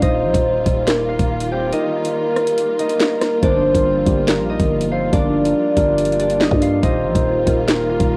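Up front, a drill drum kit drives this cold, tense hip hop excerpt, its knocking kick, sharp snare, metallic hi-hats, handclaps and rim clicks set in a half-time feel at 141 BPM, with the kick dropping out between 1.7 and 3.4 seconds. Beneath it, a growling, buzzy 808-style bass with a fast attack and decaying tail anchors the low end. A fingerpicked concert harp carries the melody with a ringing acoustic tone, softened by a low-pass filter and cassette tape coloring, while a soft octave-layered synth lead, round and triangle-like with a sub octave, traces a second line through chorus, phaser and analog delay. A dark, woody symphonic string section holds lush bowed chords with vibrato, moving from Ebadd9 to Gm7 and back. At 3.4 seconds a mellow, clean tine electric piano joins as accompaniment, and the whole piece sits in a moderate studio reverb with the hazy character of a home cassette recording.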